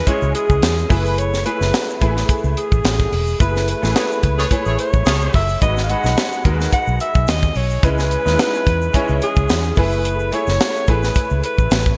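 A breathy alto saxophone carries the melody throughout this short cut from a polished 1980s jazz-funk pop track, its mellow, lightly vibrato-tinged tone trailed by a digital delay and carrying an urban, bittersweet mood. Underneath, a tight funk drum kit sits up front with a high-tuned snare and tight kick wrapped in gated reverb, while a dark, foam-muted fingered electric bass adds a round, punchy, amped low end. A clear grand piano with an ensemble chorus fills out the accompaniment over a C#m7, F#m11 and G#m7 progression, and a grainy egg shaker ticks very quietly in the background. At 4.0 seconds a tight horn section with a soft attack and jazz phrasing adds a brief second line, lasting until 5.5 seconds during a band accent. The groove moves at 108 BPM in 4/4 with a light sixteenth-note swing, framed by bright 1980s-style digital production and a touch of studio reverb.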